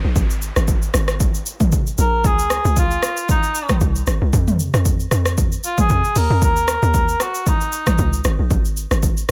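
A dry, close-sounding mix with little reverb opens this short cut from a longer amapiano piece, hypnotic and soulful in mood, with a gentle sixteenth-note swing. A hollow, bouncy log drum bass sits up front from the start, its FM tone carrying a noise layer, a fast attack and a decaying tail, while an electronic downlifter plays in the background until 2.2 seconds. A layered, produced deep house kit comes in at 0.2 seconds, with a punchy kick, dark hi-hats, rim clicks, shaker and toms, re-recorded in a small room and placed up front. At 2.0 seconds a mellow cor anglais takes a solo line in a classical style, with light vibrato and a digital delay, sounding distant and roomy yet still forward in the mix. The harmony moves between unaccompanied stretches, a Dbmaj9 and an Eb5, keeping the groove suspended and meditative.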